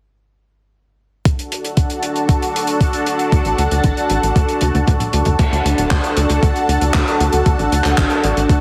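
Heavily squashed, radio-like sound with light reverb and a faint mains hum frames this playful, danceable italo disco fragment at 116 BPM, cut from a longer piece and resting on a D chord. From 1.3 s a lush, detuned unison pad with chorus and phaser holds bright, up-front sustained chords. Alongside it are a thumpy, sampler-style electronic kick and a dry, damped 70s kit of dark crash, handclaps, hi-hat and toms, which plays a fill at 4.6 s. A tight, punchy sawtooth sequencer bass with a plucky filter and tube grit drives in at 3.3 s.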